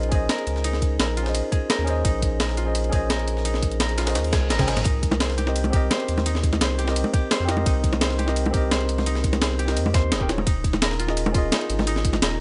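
A close, dry mix with a dark, rolled-off top frames this lush, soulful liquid drum and bass excerpt at 171 BPM, where a worn, slightly out-of-tune tine electric piano, lightly overdriven with tape echo, and a ringing fingerpicked concert harp playing delayed arpeggios drift over chords moving from Bbm11 to Cm7 and then Eb9sus4. Underneath, a deep, round sine sub bass sits up front beside a tight, layered electronic kick and a gritty, compressed, pitched-up breakbeat kit of hi-hat, snare and toms, while a second, natural-pitch breakbeat layer of ride and high-tuned snare, filtered thin, stays in the background. A faint reverse cymbal and a drum fill mark 4.3 seconds, and from 5.1 seconds low-tuned bongos played with soft hands add a rounded acoustic patter.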